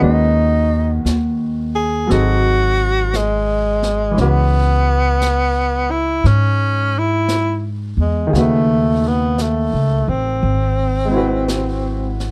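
A breathy tenor saxophone carries the melody up front in this wistful, melancholic jazz ballad, its close-miked subtone and vibrato giving the line an intimate quality. A clear baby grand piano with short sustain supplies the accompaniment, moving through a sombre progression that settles on C#m7 before turning to an altered dominant. The upright bass also sits forward, its woody, thumpy pizzicato tone from steel strings anchoring the low end. Set well back in the mix, a jazz brush drum kit in a small room keeps a gently swung pulse on brushed snare and hi-hat. The dark production carries little reverb, and all four parts enter together at the start and play through this roughly 12-second passage cut from a longer piece.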